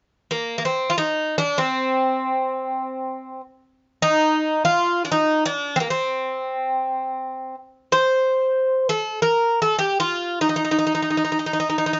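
The recording sits in a moderate studio reverb that gives each note a short halo, and the top end is gently rolled off so the sound never turns harsh. A Greek bouzouki enters at 0.3 seconds and carries the melody alone until the cut at 12.0 seconds, placed up front and close to the ear. Its picked double strings ring bright and metallic, and some octave-doubled courses add a shimmering, layered edge to each line. The playing moves in free time through Turkish makam huseyni on C, ranging from Bb3 to C5. The mood is one of longing, with a hypnotic, unhurried pull, and the passage is clearly lifted from a longer piece.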